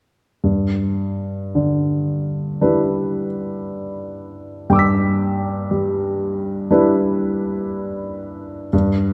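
Rubato and slow, around 53-60 BPM in 4/4, this short excerpt of impressionist classical solo piano in G major has a hazy, luminous mood. A warm, present grand piano sits up front and plays alone from 0.4 to 9.1 seconds, opening on a high G6 and ranging from G2 to B6. It rings in a moderate concert hall reverb with a 1.8-second decay.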